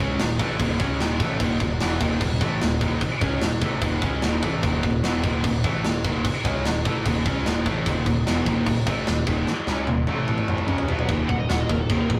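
Heavy metal, heavy and relentless, cut from a longer piece with a rough rehearsal-room sound: an up-front, tight acoustic drum kit with china and crash cymbals, snare, kick and toms, including a drum fill at 9.5 s, drives riffs from a bright, scooped high-gain guitar, a sludgy overdriven guitar and a very quiet double-tracked fuzz guitar over a punchy fuzz-toned picked bass, while a faint bowed studio string section holds smooth, soft-attack sustained chords until 11.1 s and a dark high-gain lead guitar breaks into a brief solo at 11.3 s.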